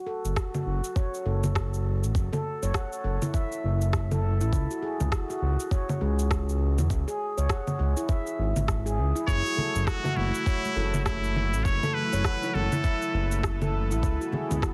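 This excerpt opens with a ringing handpan playing soft, close-miked arpeggios through a digital delay, quickly joined by a smooth synth bass that pumps under sidechain compression and an electronic bed of layered cabasa, rim click and congas, its snare softly clipped. A gritty, thumpy kick sits up front with overdrive, anchoring an earthy, meditative downtempo groove at 101 BPM in 4/4 with a gentle swing on the sixteenths, moving between F# minor and C# minor. At 9.3 seconds, as the harmony shifts to F#m7, a brilliant trumpet with a straight mute takes a nasal solo melody with light vibrato and a touch of delay, while an airy, breathy pad enters in the background with chorus and its own pumping motion. Bright acoustic congas and bongos played with soft hands join quietly behind at 9.6 seconds, adding a small-room texture before the chords move to C#m7. The whole track sits in a small room reverb with a dense, heavily limited modern master.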